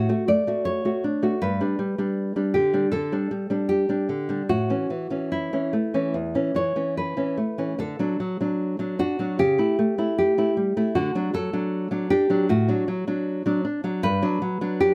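A rubato pulse in four gently stretches and relaxes the time throughout this lyrical, warm romantic duo for two nylon-string guitars, a fragment cut from a longer piece. One fingerpicked guitar carries the melody in a middle register across the full 14.9 seconds, its tone full-bodied and deep with a classical character. The second fingerpicked guitar supplies the accompaniment, reaching down into the bass, with a darker, smaller sound. Both sit up front, and finger squeaks from each guitar add intimacy. The harmony moves from D through G and A, returns to D, and passes through A7/C# and back to D before settling on Gmaj7 at 14.0 seconds. Close, detailed microphones and a light reverb give the recording a clear, natural presence.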